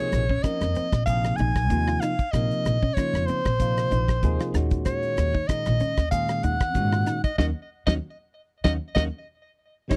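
Electric jazz fusion with a funky, nocturnal mood, moving at 95 BPM in 4/4 with a light sixteenth-note swing, cut from a longer piece. A clear soprano saxophone carries the melody up front, played in a jazz style with vibrato and a breathy subtone. Beneath it, a bell-like tine electric piano comps with a phaser, while a woody, dark pizzicato upright bass and a damped 70s drum kit with dark cymbals, a medium-tuned snare, a tight kick and rim clicks enter at 0.1 seconds. A clean, compressed electric guitar with subtle chorus adds picked stabs from the background starting at 0.3 seconds. The harmony moves from Bbm9 to Ebm7, and near the end the band hits an accent from 7.4 seconds, topped by an electric piano fill and a brief drum fill. The sound is dry and close, in the manner of a 1970s studio recording.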